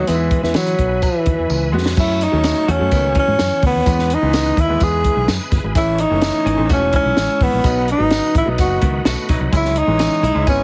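Uptempo 1960s-style soul in E major at 127 BPM, warm and danceable, with a breathy, whispered tenor saxophone carrying the melody up front through tape echo over a punchy foam-muted fingered electric bass, a compact cocktail drum kit with dark cymbals and a high-tuned snare that plays a fill at 1.5 seconds, a jingly distant tambourine, a woody upright piano with audible action noise, a reedy tonewheel organ holding chords through fast rotary speaker and chorus vibrato, and a dark, clean hollow-body jazz guitar riff entering at 2.7 seconds, all in a small room with heavily compressed radio sound and vinyl crackle.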